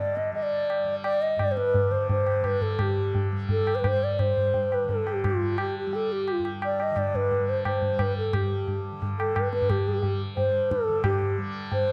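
Hindustani classical music in a devotional, meditative mood, this excerpt cut from a longer piece features an airy, hollow bamboo bansuri carrying the melody up front with vibrato and a slapback echo, over a buzzing, shimmering tanpura drone and a low-tuned, short-ringing tabla that joins at 0.2 seconds, all gradually speeding up in a concert hall reverb captured by close, detailed microphones.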